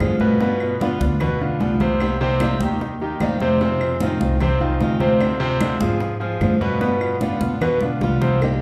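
A brilliant, polished concert grand piano and its up-front arpeggios, deep in the bass, sound from the first moment of this sultry, danceable Cuban son and guajira excerpt, together with a boxy, fingerpicked swing-style acoustic guitar, a woody pizzicato upright bass on steel strings, and a full percussion section. The band moves at 150 BPM in a straight 4/4, tuned to A4 = 438 Hz, cycling through G7, Cm7, Fm7 and Dm7b5 before returning to G7. High-tuned congas struck with hard hands give a bright, thin skin sound close to the ear, while round, low-tuned bongos and cowbell stay very quiet beneath them and dry claves click in the background. Drum fills land at 1.6 seconds and again from 7.8 seconds, just as the piano stops at 8.4 seconds and the rest of the group plays on to 8.6 seconds. The players sound live together in one large studio, wrapped in a wet reverb that lends the groove a spacious glow.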